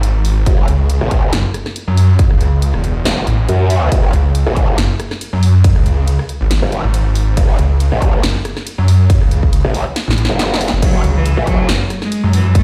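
The sound is dry and close, as if blasted through a big sound system into a bare stone room. This is heavy wobble dubstep in a half-time swing, aggressive and menacing from the first beat. A snarling distorted saw bass built from detuned unison sawtooth, square and sine layers, with a resonant moving notch, fills the low end, and it is soon joined by a growling, wobbling second bass shaped by a formant filter, overdrive and chorus. A punchy layered electronic kick sits up front with the bass, while a big-room dance kit of crash, hi-hat, ride, rim click and snare drives underneath and plays a drum fill at 10.0 seconds. At 10.8 seconds a single bowed cello enters with a biting, intense melody, its vibrato carried by tape echo.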